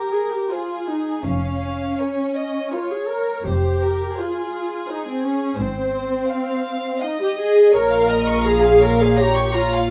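Heard in a moderately reverberant large studio, this elegiac, melancholic fragment of a slow romantic movement for string orchestra sits in F minor at 83 BPM in 3/4, with an uneven, rubato pulse. The violins carry a pure, floating melody with soft attack, while a second violin section adds an intimate line with light vibrato, and a dark, woody, lush viola section sits up front in the accompaniment, each bowed sul tasto. At 1.2 s rich cellos and double basses enter on the bass beneath harmony that moves from Fm through Bbm/F and Fm/Ab to Bbm.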